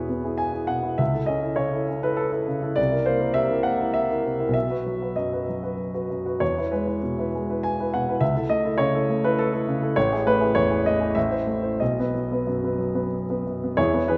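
Bathed in the wet reverb of a scoring stage, a warm, natural-sounding concert grand sits up front with a deep bass as it plays a lyrical, hopeful romantic character piece in 3/4, moving with a gently flexible rubato through harmonies that pass from E to a C7 colour and a brief A minor before settling on B, in this short passage cut from a longer work.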